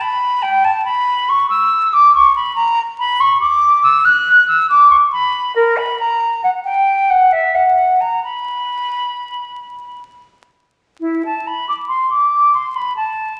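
A silver concert flute plays alone in this grave, flowing baroque-style classical fantasia in B minor, its airy, straight tone and crisp attack ranging from E4 to F#6 in a rubato 3/4 at around 63-71 BPM, tuned to A4 = 438 Hz and set in a stone room's wet reverb with vinyl crackle, the passage cut from a longer piece and lasting 13.4 seconds.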